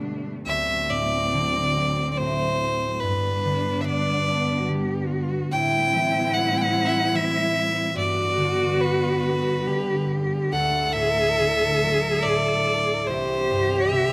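Uneven, rubato beats in 3/4 at 71 BPM carry this longing, haunting Celtic slow air, cut from a longer piece. A clear, focused fiddle with light vibrato takes the melody up front from 0.5 seconds, while a ringing, fingerpicked concert harp supplies accompaniment and a distant cello adds a soft-attacked second line with portamento. Beneath them a studio string section holds smooth-topped, expressive sustained chords through D, G, Am7, Gmaj7 and Cadd9, all in a close, detailed recording with light reverb.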